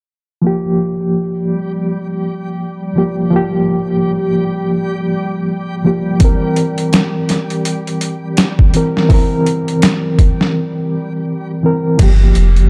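A reedy electric piano with fast tremolo, tape echo and a filter sweep opens this hypnotic, smoky trip hop piece at a swung 83 BPM in G dorian, moving from Gm7 to C7 over a dreamy, reversed, detuned swelling texture, before a gritty, overdriven boom bap sampler-style kit with a thumpy kick enters at 6.2 seconds and, after a break at 10.5 seconds, a deep, round dub sub bass arrives at 12.0 seconds within a dark production with light reverb.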